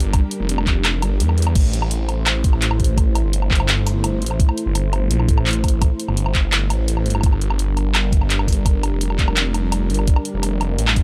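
Tense and cinematic, this half-time drum and bass excerpt opens with a faint, reversed granular texture that swells until 1.6 s, while a deep, moody analog pad with chorus and sidechain pumping holds chords moving from Gm to Am and back to Gm at 7.2 s. Up front, a thick, swirling detuned saw bass with phaser drives the low end. A compressed, thumpy, pitched-down electronic kick enters at 0.1 s alongside an overdriven drum kit of bright hi-hats, handclaps, crash cymbal and woodblock, all in a dry, gritty hardware mix.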